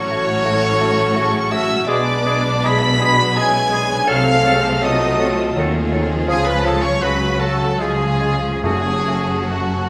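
This solemn, elegiac passage from a slow romantic orchestral movement opens with the full ensemble at once, as rich, focused violins carry the melody high in the register with vibrato over a rubato 3/4 pulse of about 68-87 BPM in F# minor. Around them, hollow, airy flutes, a roomy solo oboe, a bright solo clarinet, a second violin line and smooth, distant violas weave supporting parts, while a mellow bassoon adds soft-attack accompaniment and a vintage-toned French horn section holds sustained chords. Dark, expressive double basses and warm cellos with gentle portamento anchor the bass, a very quiet concert harp rings out fingerpicked arpeggios, and a present, tight trumpet section punctuates with stabs. At 1.9 s a very quiet trombone section joins with sustained chords as the harmony darkens through diminished chords toward a C# major chord. At 8.6 s articulate, hard-mallet timpani enter just as the music settles back onto F# minor. 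The whole orchestra sits in a lush scoring-stage reverb, and the recording is cut from a longer piece.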